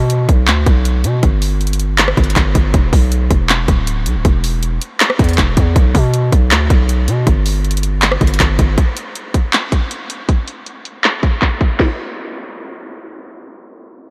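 A heavy, distorted 808-style bass with a sine core, a noise layer, a fast attack and a decaying envelope sits up front in this menacing, melancholic half-time trap excerpt, driving the low end until 8.8 s beside an overdriven electronic drum kit of hard-clipped kick, sharp snare, bright hi-hats, handclaps, rim clicks and crash, after which a filter sweep runs until 11.8 s and the drums carry on to 11.9 s, all within a light reverb and a low-pass-filtered mix.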